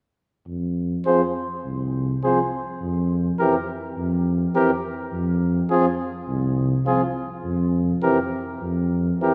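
The tuba sits up front in this short cut from a longer classical brass quintet piece, its mellow tone with a smooth top and light vibrato carrying the bass line alone from 0.5 seconds. At 1.1 seconds the rest of the quintet enters: a trumpet with gentle vibrato takes the melody, and a distant, roomy flugelhorn shapes a second line just beneath it. In the background, a warm French horn holds a steady accompanying note while a clear, punchy trombone adds further accompaniment. The mood is grave yet heroic, set in F minor at 103 BPM in 4/4 with a rubato feel, as the harmony moves between F5 and C/F. A long, wet church reverb surrounds the ensemble in a resonant hall. The tuba falls away at 9.1 seconds, and the other four parts play on to 9.3 seconds.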